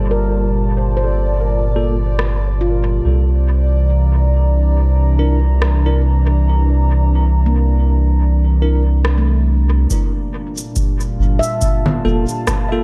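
A round, mellow dub sub bass sits up front in this deep, meditative ambient dub piece at 70 BPM in G dorian, under a warbling, nostalgic tape-like pad with 12-bit sampler grit, ringing handpan arpeggios trailing dub echo and a resonant, bubbling stepped-filter texture, while bell-like tine electric piano stabs arrive at 1.8 seconds through a filter sweep, low-passed electronic rim click, shaker and congas follow at 2.2 seconds, and a dry analog kick lands at 9.9 seconds as the Gm9 and C9 harmony returns to Gm9 in an echo-heavy mix.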